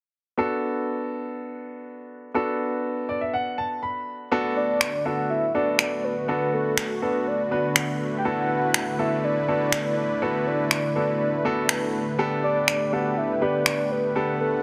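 Dense, heavily limited and bathed in a lush hall reverb, this energetic, bittersweet dance-pop excerpt opens with a clear, polished baby grand piano playing alone over a Bm7 chord, adding a fill from 2.8 seconds. At 4.3 seconds a soft, detuned supersaw brings in sustained chords. Moments later a round, dark octave-layered synth lead takes up the melody through chorus, tremolo and delay, and layered electronic finger snaps then join up front with soft clipping on the snare. The harmony arrives at a Gadd9 near the close of this fragment cut from a longer piece.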